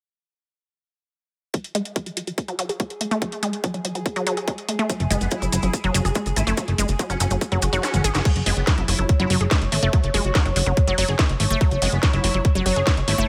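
A driving straight 4/4 pulse from an overdriven, up-front electronic kick and a drum kit with a cracking snare and metallic hats sets this intense psychedelic trance excerpt in motion at 1.5 seconds, where a lush, detuned unison pluck riff with delay and sidechain pumping enters. An evolving, phased wavetable pad, grainy maracas and an aggressive, saturated metallic wobble bass with tape echo then fill out the background as a punchy, up-front plucky analog bass joins, before a very quiet swell and a drum fill, with the kick dropping out at 7.8 seconds, lead into the second section at 8.3 seconds.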